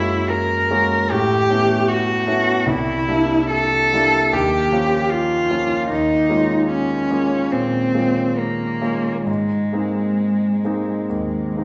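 A cello and a concert grand piano begin together in this dreamy, pastoral impressionist duo, unfolding in a rubato 4/4 feel. The bowed cello carries the melody with a soft attack, vibrato and expressive portamento, while the clear, polished piano accompanies with deep bass, long sustain and audible action noise, drifting through lush ninth chords from Gb9 toward an Abadd9 near 9.3 seconds. A wet recital hall reverb places the duo further back in the room with a gently dulled top end, and the excerpt is cut from a longer piece.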